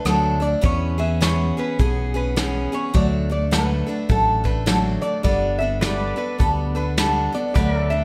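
A lap resonator guitar carries the melody from the first moment, its fingerpicked slide tone metallic and nasal, over a bright, full-bodied picked dreadnought acoustic guitar sitting up front in the accompaniment. At 0.1 seconds a dark, round fingered electric bass and a soft brush drum kit join, the bass punchy and close while the drums sound distant and roomy, with a medium-tuned snare, rim clicks, hi-hat and a punchy kick. This heartfelt, easygoing slice of honky-tonk and classic country moves at 104 BPM in 4/4 with a gentle swing on the eighth notes, drifting through D, E6, back to D and then Gadd9. At 5.8 seconds a pedal steel guitar slips in quietly, its clean, twangy, compressed slide chords arriving in volume swells. A moderate recital hall reverb lends the short cut from a longer piece an open sense of space.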